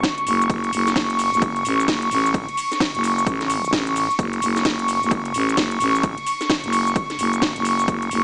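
Swaggering and gritty, this short cut from a longer bass house track moves at 130 BPM in 4/4 with a 16th-note swing, sitting in F# minor over a single F#5 chord. A growling FM bass, thick and up front with a fast attack and sustained notes between F#1 and A1, carries tube saturation and sidechain pumping. An overdriven electronic kick with a punchy edge anchors the beat, joined by a house kit of cracking snare, metallic hi-hats, ride cymbal and shaker, both parts layered and re-recorded in a large room. Above them an airy, breathy pad holds a high C#6, its detuned, soft tone shaded by a noise layer, a moving notch, chorus and its own sidechain pumping, with a slow attack and long release. Light reverb and a small-speaker sound shape the mix, and all four parts run together from the start, with the kick stopping at 8.0 seconds just before the others end at 8.2.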